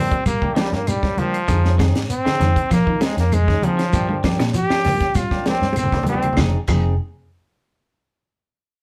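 A straight 4/4 afrobeat groove, driving and defiant, carries a forceful, brilliant trombone solo with vibrato up front over a round, punchy fingered electric bass and a tight funk drum kit with bright cymbals and a high-tuned snare that plays a fill from 5.6 to 6.4 s, while a grainy, vintage shekere shakes alongside ringing congas and woody claves in the background, a twangy, slightly broken-up electric guitar picks arpeggios, and a dark, clean semi-hollow guitar adds stabs colored by harmonic tremolo, as the band plays live in one room with moderate reverb in this passage cut from a longer piece.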